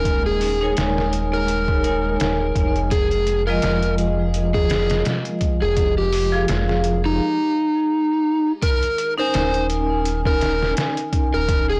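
Brooding and dark, this trip hop excerpt sets an up-front overdriven slide guitar melody with tape echo over ringing hard-mallet vibraphone with harmonic tremolo, faint vintage string-machine cellos, a round, deep analog bass with tube saturation and a muffled, pitched-down sampler-style kit with a thumpy kick, while a reversed, dreamy granular texture glimmers quietly until 7.2 seconds, the whole mix sounding blown-out and dusted with vinyl crackle.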